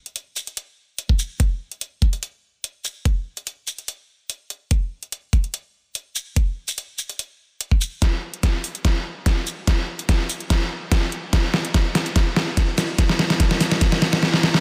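A layered electronic drum kit opens this chaotic, heavy dubstep fragment almost immediately at 0.1 seconds, with a deep snare, metallic hi-hats and a shaker. It is joined at 1.1 seconds by a knocking electronic kick drum that sits up front. The tempo is 145 BPM in 4/4 with a half-time feel, giving the groove a lurching weight. Both drum parts carry a produced, re-recorded-in-a-small-room character, while a moderate, lush hall reverb adds space around the mix. From 8.0 seconds a build-up takes over, driven by drum fills through to the end of the cut. The sound is dense and heavily limited in a modern style.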